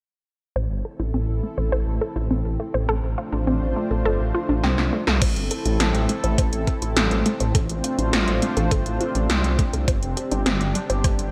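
Moody and nocturnal, this synthwave passage in A minor moves at 103 BPM in a straight 4/4, cut from a longer piece. A shimmering, chorused pulse-width pad holds sustained chords with a slow attack and vintage 12-bit sampler grit, pumping against the sidechain, while a lush, punchy unison pluck spins arpeggios through tape echo, both under filter sweeps until 5.2 seconds. Underneath, a thick, detuned saw bass sits up front with chorus and its own sidechain pumping as the chords move from Am to Dm7/A. A drum fill at 4.6 seconds brings in the 80s electronic pad drums, with a gated snare, metallic hats and crash, tape-warm and treated with gated reverb. From 5.2 seconds an overdriven, thumpy electronic kick joins as the chords cycle again and settle on Gsus4 at 9.9 seconds. Light reverb and a digital ambience wrap the whole mix.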